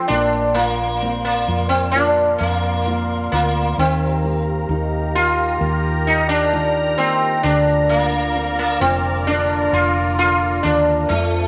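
Heartfelt and emotional, this short slice of a pop ballad moves at an unhurried pace in a straight 4/4 feel. A buzzing, shimmering sitar carries the melody up front, its sympathetic strings ringing through a slapback echo. Beneath it, a dark, woody upright piano with a slightly detuned, boxy character and long sustain provides accompaniment, while a vintage sawtooth pad with a slow attack and chorus sustains evolving, warbling chords higher up. A fingerpicked jumbo steel-string acoustic guitar with old strings adds full-bodied arpeggios very quietly in the background, and a round, punchy hollow-body electric bass enters at 0.1 seconds. The harmony moves from Bbadd9 to Ebadd9 at 3.8 seconds and settles on Bb at 7.4 seconds, all set in a light studio reverb.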